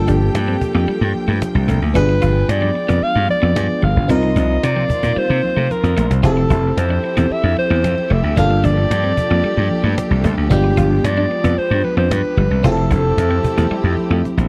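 A dry, close 1970s-style studio sound frames this glossy, urban slice of polished 1980s jazz-funk pop at 112 BPM in straight 4/4, moving through chords such as Gm9, G7b9, Cm11 and Fmaj9. A breathy, whispered alto saxophone carries the melody up front with slapback echo, over a glassy, bell-like FM electric piano treated with phaser and lush chorus, a punchy, bright slap bass, and a snappy cajon played with hard hands that adds fills around 5.7 and 14.2 seconds. Farther back sit a clean picked guitar riff with analog chorus, sustained chords from a rich, bowed string section with vibrato, and very quiet thin-skinned congas, all in a short cut from a longer piece.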